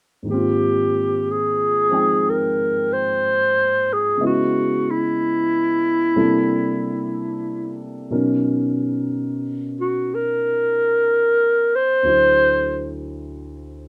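Gently swung eighths in a slow four carry this romantic, tender jazz ballad, a fragment cut from a longer piece. A dark grand piano with long sustain sits up front in accompaniment, spanning low bass to upper register beneath lush extended chords. Over it, a mellow solo clarinet, also up front, sings the melody in a vintage jazz style with breathy subtone, light vibrato, punchy attacks and scooped notes, all wrapped in a light reverb.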